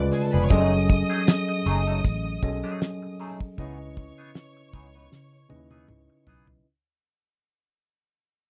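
A distant, bowed violin section with smooth vibrato, a worn, slightly out-of-tune electric piano with light overdrive and a round, foam-muted bass open this silky, bittersweet 1970s-style soul fragment at 78 BPM with a gentle sixteenth-note swing, joined almost at once by a twangy, picked clean guitar riff through wah, a dry drum kit with a fat snare and tight kick up front, and a grainy egg shaker heard only until 0.5 seconds, all fading out over close, dry studio sound as the harmony moves through C#7b9, F#m69 and C#m9 and a drum fill arrives at 5.1 seconds.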